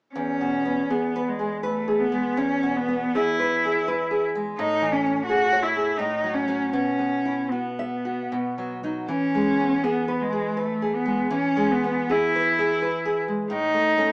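A tender, serene romantic duo in E major and 3/4, moving with rubato at about 72-88 BPM and tuned to A4 = 441 Hz, in which a rich, bowed cello sings a smooth, even melody with vibrato over fingerpicked classical nylon-string guitar, both played live in one room with light reverb and a small-speaker sound, as the harmony passes from E through Amaj7, F#m/A, Bsus4 and B back to E before touching A at 13.5 seconds in this fragment of a longer piece.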